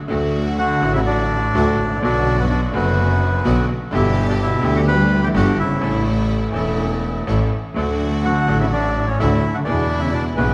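A wet concert hall reverb with a 2.0-second decay surrounds this passionate, elegant tango passage, cut from a longer piece. From 0.1 seconds a brilliant upright piano plays accompaniment with a woody, worn, slightly detuned tone and audible action noise, sounding present and intimate. A clear, focused double bass, bowed by one player with vibrato, sits up front beneath it, while a rich symphonic string section adds biting, intense stabs with light vibrato. At 0.6 seconds a reedy, mid-forward bandoneon enters up front with the melody, joined in the background by a dark, nasal, boxy cello that plays a second line with expressive vibrato and portamento. The feel is rubato in 4/4, and the harmony moves through D, Bm, G and A, returning to D before closing on E7.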